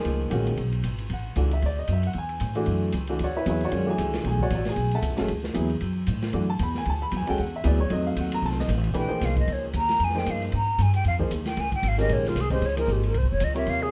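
A breathy, hollow flute carries the melody in this cool, searching modal jazz passage, entering at 9.0 s for a solo with soft attacks, vibrato and lifted highs, sitting up front in the mix. Beneath it, a clear, woody upright piano with a vintage character and long sustain supplies the accompaniment throughout, its chords moving through minor eleventh, added-ninth and altered dominant colors before the tonal center shifts as the flute arrives. An upright bass, plucked on gut strings, gives a thumpy, dark pulse close to the listener. An acoustic drum kit of hi-hat, kick, snare and ride keeps a brisk swing feel in the background, with dusky cymbals, a medium-tuned snare and a boomy kick heard in a small-room sound. A moderate club reverb lends the whole ensemble a nightspot atmosphere, and the passage is cut from a longer piece, ending at 13.9 s.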